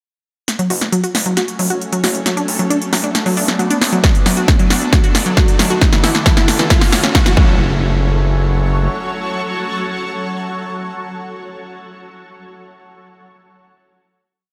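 A punchy, tape-warm kick drives this short, bittersweet uplifting trance piece in a four-on-the-floor pattern from 4.0 to 7.5 seconds, while crisp programmed hats and a snare backbeat, re-recorded in a large room, start earlier at 0.5 seconds. A gritty, saturated synth bass with off-beat notes and a lush, detuned unison pluck arpeggio cycling in a 3-step loop against the bar both pump under sidechain, with a filter sweep on the arpeggio as the drum fill and build run through a progression in F# minor. A shimmering, ethereal pad with chorus and phaser sustains from 1.3 seconds on and carries through the final hit at 7.6 seconds, while a very quiet riser and impact mark the transition.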